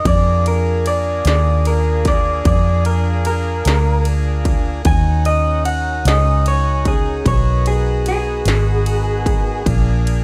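A clean, slightly broken-up electric guitar solo leads this brooding, mournful slow blues in 12/8 at 50 BPM, its compressed, lo-fi tone sounding through a small old amp until 9.6 seconds. A dark, round, foam-muted bass sits up front alongside a heavy-kicked electronic drum kit with a clanging snare and ride cymbal, while a smooth tonewheel organ on a slow rotary speaker and a soft-attacked, lightly vibrato-tinged horn section hold sustained chords. The harmony moves from Bb7 through Ebm7 and Abm7 before returning to Bb7, all in a light reverb and tuned slightly below standard pitch, in this short cut from a longer piece.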